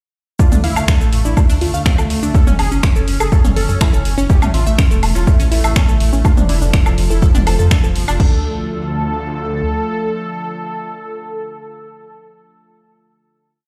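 A punchy four-on-the-floor kick at 123 BPM drives this hypnotic melodic techno piece in D minor, joined by dark programmed hats, snaps, shaker, woodblock, toms and crash from a deep house kit, a menacing detuned saw bass rolling in sixteenths, a lush 32-step unison pluck arpeggio with delay, and a thick, bright wave-folded unison lead riffing over a pedal note with chorus and delay, the bass, pluck and lead all pumping against the kick, until the drums stop at 8.3 s and a morphing, vintage wavetable pad that entered at 5.1 s carries the final chord alongside the lead to 12.1 s in a stony room reverb.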